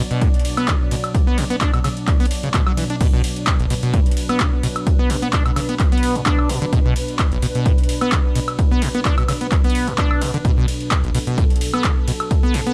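Gritty and hypnotic, this acid house excerpt at 129 BPM in B minor, with a light 16th-note swing, rides a squelchy, resonant sawtooth acid bass riff with tube saturation, tape echo and sidechain pumping, over a warbling, lo-fi detuned pad holding sustained Bm chords, a booming analog drum machine with metallic hats, handclaps, ride, crash and woodblock, and a punchy, up-front electronic kick, all in a light reverb.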